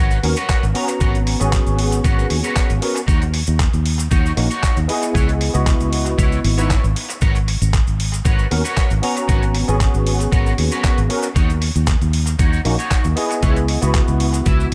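Nu-disco with a groovy, sensual feel and a light swing, cut from a longer piece and moving through minor-seventh and eleventh chords. A round, dark, foam-muted fingered bass sits up front with a thumpy electronic kick, while a dusty, gritty sampler-style kit adds handclaps and hi-hat and a cabasa shakes in the background. A barky tine electric piano, lightly overdriven through a combo amp with chorus and delay, carries the accompaniment, and a twangy, slightly broken-up picked guitar plays a riff through chorus and analog delay in a dry but echo-heavy mix.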